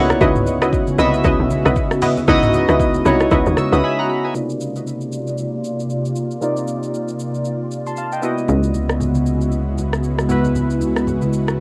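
Soulful and late-night, this amapiano excerpt opens on a drop where a tight, percussive log drum bass and punchy, bright chord stabs with tape echo ride over an electronic drum kit of deep kick, dark hats, rim click, shaker and toms, with low-tuned congas very quiet beneath. Round, detuned analog keys sit up front with chorus and a filter sweep, while an ethereal, airy pad holds sustained chords with sidechain pumping and built-in reverb, and the stabs and log drum stop at 3.8 s for a brief break. From 8.5 s a plucky, resonant analog bass joins up front as the congas return, and the whole piece carries a homemade cassette character in a lightly reverberant room.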